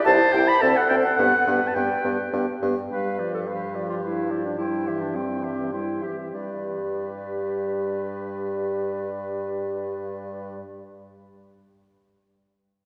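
A tongued, pure-toned flute melody opens this spirited, lively classical-period wind quintet movement in triple time, cut from a longer piece, over a soft-attacked clarinet accompaniment, joined almost at once by the oboe's light-vibrato second line, a mellow French horn and a punchy, up-front bassoon bass, with the pace slowing from 2.0 to 6.3 seconds and the whole quintet set in the wet, resonant reverb of a church.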